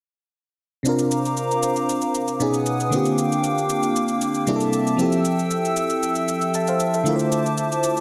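Amapiano at 116 BPM in a straight 4/4, this relaxed, soulful excerpt from a longer piece drifts in a dreamy haze of lush hall reverb. An FM electric piano enters at 0.8 seconds, sitting up front with a glassy, bell-like attack that decays over a full body, a faint noise layer and a gentle chorus shimmer. From 0.9 seconds a hollow, flute-like pad holds sustained chords, swelling in slowly as a mellow, soft bed that is also chorused. A quiet electronic shaker, layered and roughened by vintage 12-bit sampler grit, ticks along in the background from the same moment. The harmony moves through lush extended colours, from C9sus4 through B6, Bb6/D, C13 and Fmaj9 to Dm7, all continuing until the clip ends at 8.0 seconds.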